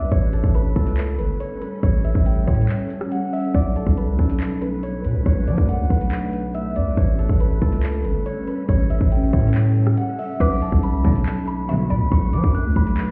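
Dark and brooding, this half-time trap cut in B minor moves at 140 BPM, its chords shifting between A7 and Bm7 while the whole mix sounds muffled through a wall inside a stone room. A thumb-plucked concert harp carries the melody with a ringing, delayed tone, set over a cloudy, blurred granular pad holding sustained chords with its own reverb. Up front, a distorted 808-style bass hits heavy and aggressive, and the trap kit, entering at 0.1 seconds, pairs a hard-clipped kick with metallic hats, handclaps, rim clicks and crash cymbal in a tape-warm sound. A brief break arrives at 2.7 seconds before the groove resumes. At 10.4 seconds a woody, round mallet-like pluck with chorus and delay slips in at the back as a second line, and from 11.0 to 12.0 seconds a lush symphonic string section adds bowed, vibrato-rich stabs before the fragment ends.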